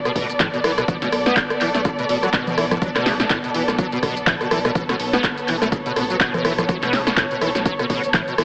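Hypnotic and trippy, this acid house cut in B minor moves at 124 BPM with a swung sixteenth feel, resting on a single Bm7 chord for its 8.4 seconds. A squelchy, resonant acid bass riff with filter sweep, chorus and tape echo pumps beside a distant, lush bowed string section holding sustained chords with vibrato and portamento. A deep, dark analog bass also pumps in the background, while up front a punchy analog drum machine plays congas, handclaps, hi-hat, rim click, shaker and snare with a short room and tape-warmed tone alongside an electronic kick, the whole mix sitting in hall reverb and squeezed into a heavily compressed, AM radio-like sound.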